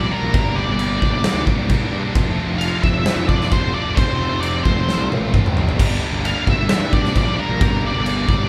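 A straight 4/4 pulse at 132 BPM drives this dark, brooding quiet-loud alternative rock passage in G minor, cut from a longer piece, where an octave-fuzz lead guitar carries a shadowy melody over a bed of riffing guitars: a scooped high-gain guitar, a thick fuzz guitar and a very quiet, double-tracked sludgy distorted guitar, with a growly, overdriven fuzz picked electric bass underneath, while a big rock drum kit with a punchy kick and medium-tuned snare sits up front from 0.3 seconds and plays a fill from 4.9 to 5.8 seconds, the whole band sounding as if playing live in one room with light reverb.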